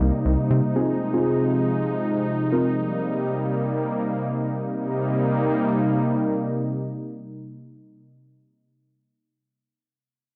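A detuned, warbling analog pad and a rubbery, hollow square-wave bass open this melancholic, cool pop fragment in C minor, cut from a longer piece and moving in free time. The bass sits up front with a resonant filter pluck but drops away by 0.6 seconds, leaving the mellow sawtooth pad to carry sustained chords through a Cm7, Ab6 and back to Cm7. Muted, felt-like synth keys enter at 0.8 seconds for a brief, intimate accompaniment in a soft, dark register, with a noise layer and a filter sweep over their decaying notes. Both the pad and the keys are coloured by chorus and cassette tape, and the pad carries a vintage sheen. The pad holds on alone until 8.0 seconds inside a short, wet booth ambience that suits this home cassette recording.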